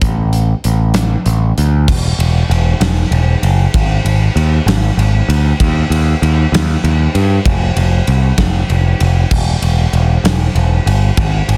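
Anthemic and restless, this quiet-loud alternative rock fragment in a straight 6/8 pairs a growling, overdriven picked electric bass, bright and up front, with a dark, smooth, big-room acoustic rock kit built on a fat snare, a punchy kick, hi-hat, ride and crash cymbals, all sitting dry and dense in a heavily limited modern master as the music shifts into a new section at 1.9 seconds.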